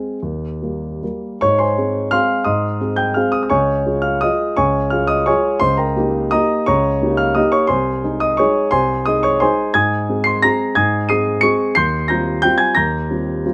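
Sparkling and graceful, this brief classical piano waltz excerpt in Ab major moves in a rubato 3/4 at roughly 145 to 192 BPM, with a solo grand piano of dark, mellow tone sitting up front in light reverb, ranging from C2 to Eb7 as it passes from Eb through Ab, Db, Eb7/Db and Ab/C before resting on an Eb69 chord at 11.8 seconds.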